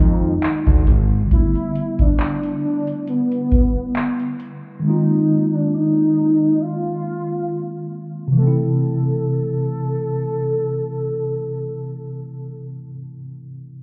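A velvety synth lead carries the melody, its smooth sawtooth-and-triangle tone colored by chorus, vibrato and digital delay, giving this moody, longing slice of contemporary R&B its yearning voice. Beneath it, a mellow tine electric piano plays clean accompaniment through its built-in speakers, moving from Bb9sus4 to A9sus4 and back before settling on A minor, and it carries on alone after the lead ends at 12.7 seconds. A fat, detuned sawtooth bass with a filter sweep appears only for the opening 1.2 seconds. A booming analog drum machine, with its deep kick, metallic hi-hats and handclaps roughened by 12-bit sampler grit, enters just after the start and stops at 4.6 seconds, with a gentle 16th-note swing in the groove. The whole mix sounds as if heard muffled through a wall, bathed in club reverb and light digital ambience, and the passage is cut from a longer piece.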